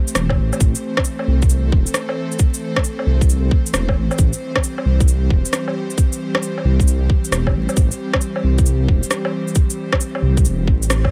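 A dark, rumbling detuned saw bass sits up front in this nocturnal, rainy future garage piece at 134 BPM in A minor, pumping with sidechain compression over a single held Am7 chord. A tight, layered electronic kick joins at 0.3 s alongside overdriven shaker, rim click and woodblock with a 16th-note swing, while a soft, breathy, warbling pad with chorus breathes through the background over a constant bed of vinyl crackle. The band hits an accent at 10.9 s in this short cut from a longer piece.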